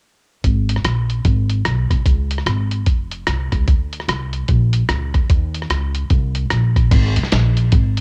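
A woody, plucked upright bass with steel strings sits up front, moving through a low register in an uplifting, reverent uptempo gospel groove with a swung lilt. Both the bass and the drums come in at 0.4 s and play together until the clip ends at 8.0 s. The lo-fi, sampler-style drum kit is compressed and muffled, with the cassette tape colouring its kick, snare, hi-hat, rim clicks and crash cymbal. Its thumpy kick and medium-tuned snare are set close and prominent beside the bass. The dry, home-cassette sound gives the pair an intimate, homespun quality, and a new section arrives at 6.9 s in this short cut from a longer piece.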